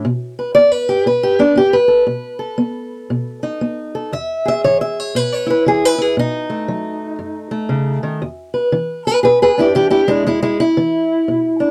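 Acoustic country blues with a gritty, swaggering mood at 118 BPM in a swung 4/4 in E major, tuned slightly below standard pitch, this fragment of a longer piece features a single fingerpicked steel-string acoustic guitar with a boxy parlour tone placed up front in a dark, warm production with moderate booth ambience, moving from B7 through E and back before stepping into a solo passage over E7 at 8.2 seconds.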